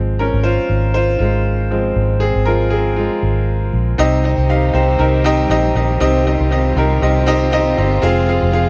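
Pop fragment at 119 BPM with a light sixteenth-note swing and a driving, earnest mood, where a bright, woody upright piano with long sustain and a dark, round, foam-muted electric bass sit up front over chords moving from Fm/Ab to Cm and Fm, joined at 4.0 seconds by a lush bowed string section with vibrato and portamento in the background, all captured in a dry, close 1970s-style studio sound.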